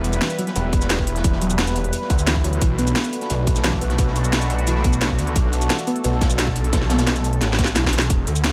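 A lightly reverberant, tense and futuristic cut from a dark technical drum and bass drop at 175 BPM, where a snarling, growling distorted saw bass and a tight, tape-warm electronic kick entering at 0.7 s drive beneath an up-front layered kit of cracking snare and crisp hats over a gritty, saturated breakbeat kit in the background, while a bright, resonant pad holds sustained Em and Bm7 chords and a soft, round pluck spins dub-echoed arpeggios, with bass, pad and pluck all pumping against the kick and a drum fill arriving at 7.4 s.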